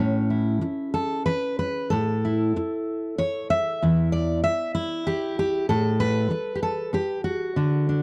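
A fingerpicked steel-string acoustic guitar opens this short folk fragment alone, its full-bodied jumbo tone and audible finger squeak sitting up front in a dry, close 1970s-style studio sound as it moves through A, A5 and Asus2 in a loose, rubato 3/4 at around 95 BPM, carrying a hopeful, nostalgic mood across its eight seconds.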